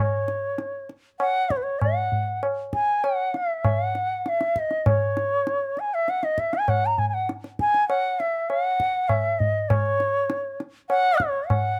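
Hindustani classical music in raga Bhimpalasi on C#, this brief excerpt at 99 BPM carries a longing, introspective mood as an up-front bamboo bansuri sings the melody between B4 and A#5 with a pure, bright tone, soft attack and expressive vibrato in plate reverb, while a close, low-tuned tabla with a short ring enters at 0.3 seconds and the piece shifts into a new section at 9.7 seconds within a lightly reverberant room.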